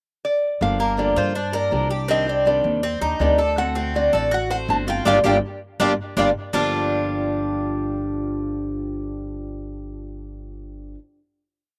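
The sound is dry and close, recorded outdoors with little reverb. This short, nostalgic and danceable Latin piece moves at 162 BPM in straight 4/4 in G minor, moving through Gm7, Cmadd9 and D7 before returning to Gm7. A metal-body resonator slide guitar opens the pickup at 0.2 seconds with a nasal, metallic, fingerpicked slide melody built from motif-based sentence phrases, up front and touched with slapback echo. Beneath it, a boxy flamenco guitar with fresh strings strums with muted slaps and audible finger squeak, while a bright Cuban tres with doubled strings picks an up-front arpeggiated guajeo, both also carrying slapback echo. A woody, dark pizzicato upright bass plays a tumbao that anticipates the chord changes. The band hits an accent from 5.1 seconds, and the piece closes on a final chord that rings from 6.5 seconds.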